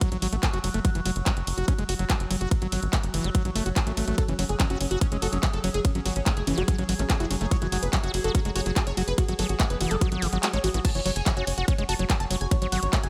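Driving and alien, this psychedelic trance excerpt at 144 BPM in F# minor runs on a tight, up-front electronic kick and a tape-toned garage kit of hi-hat, ride, crash and handclaps, with a punchy sawtooth sequencer bass and a squelchy, distorted acid bass riff with delay, all beneath a resonant, phased drone of sustained chords with shifting overtones and sidechain pumping, before a thick, dark, detuned unison lead with vibrato enters at 4.2 seconds and the kick briefly drops out from 10.4 to 10.8 seconds.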